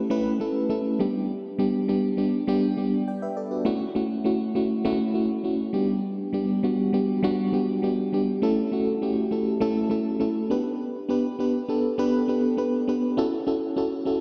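A pop piece with an uplifting, romantic mood, heard here as a short cut from a longer work in a straight 4/4 feel. A single FM electric piano with tremolo carries the whole passage alone from 0.0 to 14.2 seconds, ranging from G3 to G5. Its tone is full-bodied and dark, with a fast attack, decaying notes, a noise layer and a pulsing tremolo, and it sits up front in the mix. A diffuse ambient delay trails the piano, while a lush hall reverb soaks the sound in a dreamy haze. The harmony moves through A, G and F#m7, cycling back to A at 8.4 seconds before settling on F#m7 again near the close.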